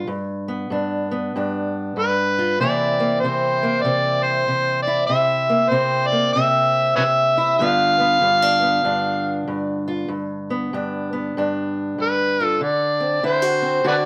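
A gritty, overdriven harmonica with slapback echo carries the melody in a laid-back, rollicking swung blues. It enters at 2.0 seconds with scooped notes, tongue slaps and light vibrato over a dark, boxy fingerpicked parlour acoustic guitar that moves from G through C7 and G7 to D7, all set in moderate small-room reverb.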